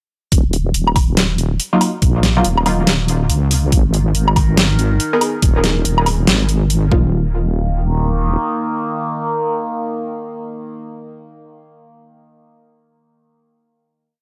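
Beginning with a half-time drop of knocking overdriven kick, deep snare, bright hats and a low woodblock beneath a deep sine-and-sawtooth wobble bass of shifting wobble speed, this dark, meditative deep dubstep piece adds sparse, muted, detuned chord stabs trailing dub echo at 1.7 seconds and a wave-folded, resonant drone of moving overtones with phaser at 4.2 seconds, both ringing on after the beat stops at 7.0 seconds into a final hit within a gritty digital ambience.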